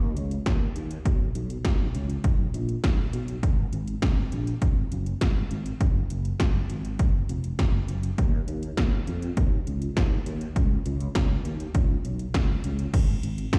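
A straight 4/4 groove of 80s-style electronic pad drums, with punchy kick, gated snare, metallic hi-hat and crash cymbal carrying a tape-warm analog edge, enters at 0.2 s over a growly, up-front sustaining fretless electric bass thickened by ensemble chorus, giving this nocturnal, melancholic synth-pop excerpt the sound of being played on a big system in a bare room with large studio reverb.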